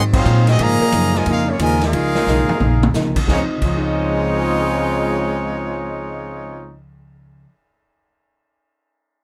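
A joyful big band swing excerpt bursts in with a band accent at 0.1 seconds, as the bright, close-miked trumpet section takes the melody up front with light vibrato and the trombone section adds a soft-attacked second line beneath it. An upright bass, plucked with a woody, steel-strung edge, carries the low end while a dark, clean hollow-body electric guitar picks out the accompaniment. The drum kit sounds distant and roomy, with a medium-tuned snare, boomy kick, hi-hat, ride and crash, and it drops a fill from 2.3 to 2.9 seconds before falling silent at 3.7 seconds. From 0.8 seconds a mellow, smooth-topped saxophone section holds tight sustained chords in the background. The harmony moves from a dominant chord into a major sixth-ninth and later a major ninth, and a moderate booth ambience surrounds the ensemble as the excerpt swings to its end.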